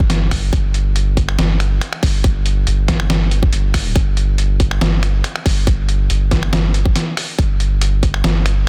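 A half-time groove at 140 BPM in 4/4 drives this dark, meditative slice of deep dubstep, cut from a longer piece and tuned slightly flat of standard pitch, with A at 437 Hz. A tight, layered electronic kick sits up front from the first moment, joined almost at once by a sampler-style trip hop kit of finger snaps, hi-hat and a medium-tuned snare that sounds compressed, pitched down and gritty. Underneath, a soft dub sub bass reaching down to G1 holds deep, round tones with a fast attack and long sustain, its character blending triangle and square waves. A brief break arrives at 7.0 seconds, and the kick drops out shortly after at 8.1 seconds while the bass carries on to the close. The whole is set in a digital ambience and given a dense, heavily limited modern master.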